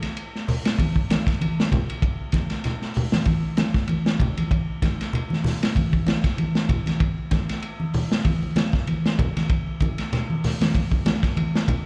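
A driving afrobeat groove at 96 BPM in 4/4 rides a 55% swing on the 16ths, its hypnotic pulse set by a crunchy breakbeat drum kit whose punchy kick, medium-tuned snare, hi-hat and dark ride cymbal sit up front with a saturated, gritty, rolled-off tone. Congas with a thick-skinned, warm body join at 0.5 seconds and carry on through the whole passage, which is cut from a longer piece. The sound is that of a live gig heard through the venue's PA, with club reverb around a small, lightly reverberant room.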